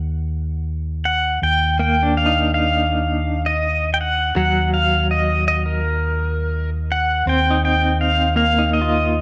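This acoustic folk-pop ballad moves at an unhurried 82 BPM in a straight 4/4, with a nostalgic, intimate mood in a short excerpt cut from a longer piece. A dark, round fingered electric bass opens alone at 0.0 seconds, its amped, punchy tone sitting up front. The pedal steel guitar carries the melody from 1.1 seconds, played with fingerpicks and slide, its clean, compressed voice marked by volume swells and placed up front in the mix. At 1.8 seconds a direct-recorded clean electric guitar adds picked arpeggios with tremolo, its tone warm and compressed. The harmony shifts between Eb5 and Eb minor, and a moderate plate reverb with a long 3.6-second tail lends the whole passage a spacious, reflective glow.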